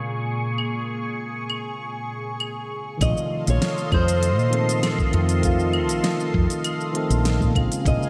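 Smooth and wistful, this sunset chillout excerpt opens on a clean tine electric piano, played through a combo amp with digital delay and slapback echo, beneath a lush unison pad of detuned sawtooth and square waves whose slow attack, chorus and phaser give it a thick, bright shimmer. A smooth R&B drum kit arrives at 0.6 seconds, its electronic, produced sound built from claves, a shaker, smooth hats and a fat snare. At 3.0 seconds the harmony moves from Bbm7 to F7/Bb, and a dark, fingerpicked flamenco guitar takes the melody, finger squeaks audible, carrying the same delay and slapback echo as the piano. A woody fretless electric bass enters there too, hollow-bodied, round and prominent, alongside a gritty, tape-warm electronic kick with a compressed, thumpy punch. A moderate hall reverb and a low-pass filter lend the mix a big arena sound before the chords return to Bbm7 near the close.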